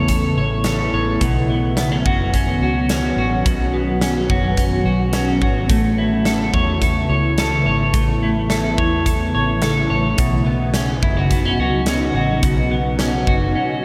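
A clean, up-front electric guitar picks arpeggios through lush chorus and tape echo over a shimmering, ethereal pad with octave-up sparkle and phaser, while a dark, round, foam-muted bass and a huge arena drum kit with a punchy kick and pumping room sound anchor this blissful dream pop fragment, steeped in hall reverb as the chords move between Aadd9 and Badd9 before a break at 13.6 seconds.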